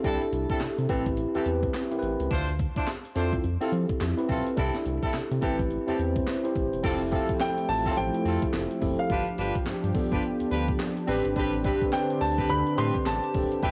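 A bouncy, flirty new jack swing groove at 106 BPM opens with a worn, slightly out-of-tune tine electric piano through a phaser, jazzy horn stabs with light vibrato, a round, deep analog bass and a gritty, compressed breakbeat kit with a thumpy kick, high-tuned snare, handclaps, hi-hat and crash, all swung on the 16ths over chords moving from C69 and Am7 through Dm9 and Fmaj7. At 6.8 seconds a smooth, detuned analog pad with chorus joins on sustained chords, and at 7.4 seconds a dark, intimate baby grand piano with audible action noise carries the melody up high as the harmony moves through Fmaj7 and G7 to Am11. Spring reverb and the character of a home cassette recording give this cut from a longer piece a vintage feel.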